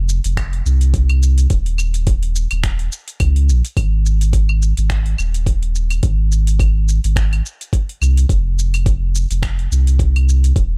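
A swung 16th-note groove at 106 BPM in 4/4 drives this smooth, sunny sunset chillout excerpt in Ab major, where a deep, round sine sub bass with a fast attack and sustained, mellow notes sits up front from 0.0 seconds, joined from 0.1 seconds by a produced R&B kit of claves, finger snaps, metallic hi-hats and shaker and from 0.4 seconds by a knocking electronic kick up front, both drum parts carrying a small room ambience within a dry, gritty hardware sound.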